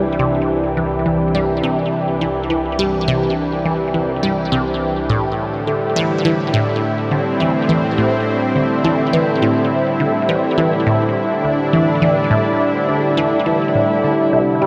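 A lush, warbling unison pad with chorus sits up front, holding sustained chords that move from C7 to Am at 5.1 seconds, while a squelchy, resonant blip pluck with phaser and delay cycles a low riff and a very quiet, thumb-plucked Celtic harp rings out arpeggios above, all in a hypnotic, mysterious excerpt of ambient, sequencer-driven space music at 104 BPM in A phrygian, tuned to A4 = 437 Hz and bathed in a huge, wet reverb.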